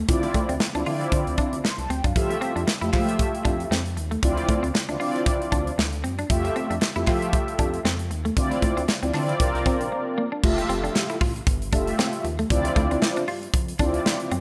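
Up-front, round synth brass carries the chords in this feel-good, danceable early-eighties boogie funk excerpt, over a punchy drum kit with bright cymbals, a glossy chorused synth bass, a clean semi-hollow guitar riff, very quiet crisp handclaps and a lush hall reverb in a rough home-demo mix, with a short break at 9.9 seconds before the closing section.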